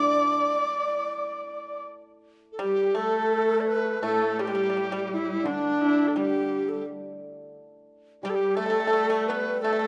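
In a free, rubato 4/4 pulse, this festive and graceful Chinese chamber ensemble piece is cut from a longer work, with a new section arriving at 2.6 seconds. Up front, a mellow large dizi carries the melody with a buzzing membrane, crisp attack and vibrato, while a breathy, unsteady low xiao sits in the background and a husky, bright horsehead fiddle adds bowed portamento. A dry, percussive pipa played with fingerpicks rounds out these second lines, and a shimmering, ringing hammered dulcimer supplies the accompaniment, all captured with close, detailed microphones in a moderate recital hall.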